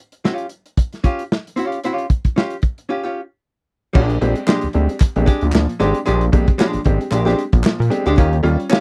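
A gritty, saturated breakbeat kit drives this energetic, playful funk fragment at 113 BPM in 4/4, with a 16th-note swing, its kick, snare, hi-hat and dark crash cymbals set up front with a rolled-off top. A clean, compressed hollow-body archtop guitar, picked and amplified, comps alongside from the start over a Db harmony, and a short break arrives at 2.9 seconds. At 4.0 seconds the music shifts to Bb13 as a fat sawtooth bass enters, thick and wave-folded with a filter sweep and sustained notes. A woody, slightly detuned upright piano adds stabs from 3.9 seconds, and crisp group handclaps sit low in the mix. The harmony moves to Eb9 near the close, all captured in a dry, close 1970s-style studio sound in Bb mixolydian.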